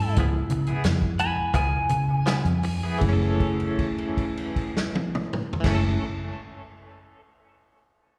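A clean, up-front lap steel guitar carries a slide melody for the first 3.0 seconds of this smoky, soulful straight-eighth soul blues excerpt at 78-91 BPM, over a reedy electric piano with fast tremolo, twangy direct-recorded guitar stabs with tape echo, a dark foam-muted fingered bass and a dry, mid-forward drum kit, moving from C#7#9 to F#m7 and slowing down before a held note from 3.0 seconds, all heard as a live gig through the venue's PA with recital hall reverb.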